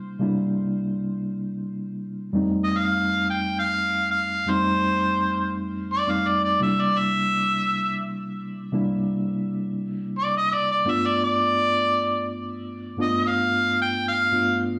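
Laid-back and soulful, this blues excerpt moves at 113 BPM in C mixolydian with a light swing, heard as a live club gig through the venue's PA. A reedy, mellow electric piano sits up front from the start, its fast tremolo and slapback echo coloring the accompaniment through C9, F9 and G9 chords. At 2.6 s an overdriven harmonica takes the solo with vibrato and scooped, punchy notes, its vintage tone thickened by slapback and tape echo against a moderate club reverb.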